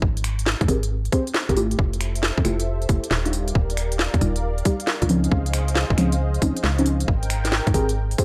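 Dry and gritty, this short two-step garage cut at 136 BPM swings its 16ths for a sunny, bouncy feel, with a tight, tape-warm kick and a layered garage kit of finger snaps, crisp hats and a cracking snare sitting up front. A hollow, organ-like FM bass pumps with sidechain in a dark low register, while deep, mellow chord stabs treated with chorus, phaser and tape echo enter at 0.7 seconds and carry a filter sweep through Abmaj9, Fmaj9, Ebmaj9 and Dbmaj9. From 1.8 seconds a smooth, detuned analog pad adds soft sustained chords with chorus and its own sidechain pumping, sitting lower in the mix.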